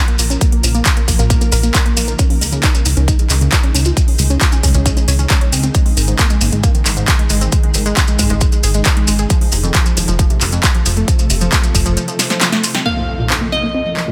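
A shimmering, ethereal pad sits behind a punchy, up-front low end in this driving, emotional uplifting trance excerpt, set in Bb minor at 135 BPM in a straight 4/4. The chords move from Bbm through Dbsus2, Absus4 and F before returning to Bbm. A detuned analog pluck spins arpeggios through chorus, cassette tape and tape echo, with a filter sweep shaping it. Under it, a dark, funky sawtooth bass with a moving notch and a layered electronic kick drive the groove, while the pad, pluck and bass all pump against the sidechain. A big-room dance kit adds a punchy snare, metallic hats and handclaps, with grainy, vintage maracas on top, and a drum fill at 12.2 s leads into an electronic impact at 12.9 s. There a crystalline wavetable pluck enters up front with chorus and tape echo, and the recording carries light reverb throughout.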